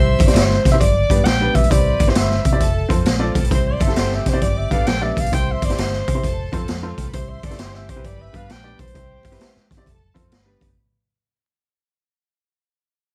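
Uplifting, warm 1960s-style soul with a swung feel, where a distant, vibrato-laden alto saxophone carries the melody over a gritty, saturated garage drum kit with a boomy kick, a round, foam-muted electric bass, a woody, slightly detuned upright piano, very quiet high-tuned congas and a biting violin section in the background, joined at 3.8 s by a dark, soft-edged horn section, all under light reverb and vinyl crackle as this fragment of a longer piece fades out across its length.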